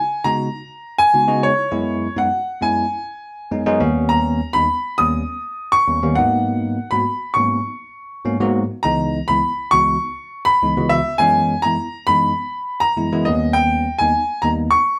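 Jazz with a funky, slick mood, this excerpt moves at 101 BPM in a straight 4/4. A brilliant grand piano carries the melody high in its register, between C#5 and D#6, with a natural, up-front tone. Beneath it, a bell-like tine electric piano supplies the accompaniment from C#2 to F#4, sounding clean and direct. Both keyboards play from 0.0 seconds, the electric piano stopping at 14.8 seconds and the grand piano continuing to 15.0 seconds. The harmony moves through suspended and extended colours such as C#7sus2, F#9sus4, D#7b13, G#m7 and C#m9. It sounds like a band playing live together in one room, with a moderate studio ambience around the bright keys.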